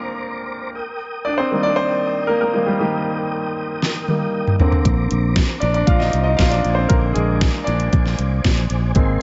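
Piano-driven pop in Bb mixolydian at 117 BPM, this uplifting, warm excerpt opens with a clear, polished concert grand carrying the lead while a soft, flute-like tonewheel organ holds sustained chords alongside it, colored by chorus vibrato and a fast rotary speaker, moving from Bbadd9 to Eb and back. A drum fill at 3.8 seconds brings in an overdriven, up-front pop kit with a knocking kick and deep snare, and a round, punchy fingered electric bass joins at 4.9 seconds. Light reverb gives the mix a gentle, slightly dark sheen.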